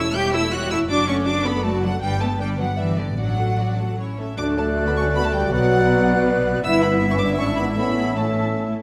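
A rich, focused violin section carries the melody of this cheerful, lively classical-period movement for symphony orchestra, a quick piece in 3/4 and D major at 146-164 BPM with a rubato feel. Beneath it, a clear, close second violin section adds a lush, even line, and a smooth viola section sits in the background. A warm cello section and an expressive double bass section, with soft attacks and portamento, anchor the bass, and all the strings are bowed with vibrato. At 4.4 s the winds and brass join: a pure, metal-toned flute and a distant, roomy clarinet add second lines, a mellow bassoon supports the accompaniment, and a dark French horn section, the loudest part, holds sustained chords. The harmony moves from A7/E through G, Bm and E7/G# before settling on A, and the whole ensemble sits in a wet scoring-stage reverb until the cut at 8.7 s.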